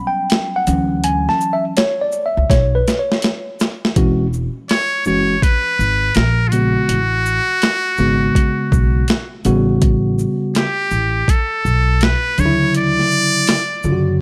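A worn, slightly out-of-tune tine electric piano opens this relaxed, smooth jazz-hop passage, cut from a longer piece, with a rootless A13 chord before settling onto Dmaj9. A gritty, sampler-style boom bap kit sits up front at 82 BPM in 4/4, with a thumpy kick, a medium-tuned snare, hi-hat and shaker. The kit is compressed and overdriven, and it plays a drum fill at 2.5 seconds. Underneath, a woody pizzicato upright bass with steel strings holds the low end. At 4.7 seconds a trumpet with a metal mute takes the melody, buzzy and thin yet brilliant, with light vibrato in a jazz style, over chords moving through E69, G#m11/A#, Amaj13 and A13 before returning to Dmaj9. The 16ths swing at 65%, and light reverb surrounds the whole mix.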